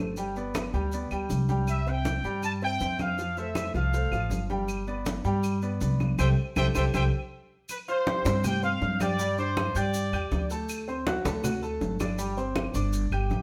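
A clear, open concert grand piano and a dark, thumpy pizzicato upright bass on gut strings start this festive, danceable salsa excerpt, quickly joined by ringing congas, grainy close maracas and distant claves set far back in the background. At 1.7 seconds a tight, punchy trumpet section with a smooth top takes the melody up front, and a drum fill and band accent mark the turn into the second section at 7.7 seconds, where the harmony shifts to suspended chords before a D7. The whole band plays live in a moderately reverberant stone room, and the piece is cut from a longer performance.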